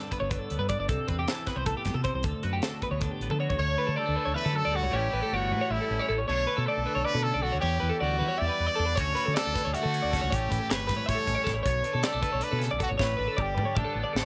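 Intricate and bright, this math rock and midwest emo cut races along at 313 BPM in eighths, in a straight 7/8 and the key of D major, and is taken from a longer piece. Two clean, picked twelve-string electric guitars run throughout: one plays up-front, compressed accompaniment with a harmonic tremolo, while the other spins twangy arpeggios high above it through a lush chorus. A fingered electric bass with a dark, round tone enters at 0.2 seconds, and a polished drum kit with a high-tuned snare and punchy kick plays up front in an airy small room, dropping out at 3.6 seconds and returning at 9.0 seconds. At 3.6 seconds a brilliant, forceful trumpet takes the solo melody in a pop style, with light vibrato and tape echo, sounding distant and roomy yet still up front. The harmony moves through colorful extended chords such as Cmaj9, Bm9 and Em9, settling on an A9sus4 as a drum fill carries the passage to its close under light reverb and small-room ambience.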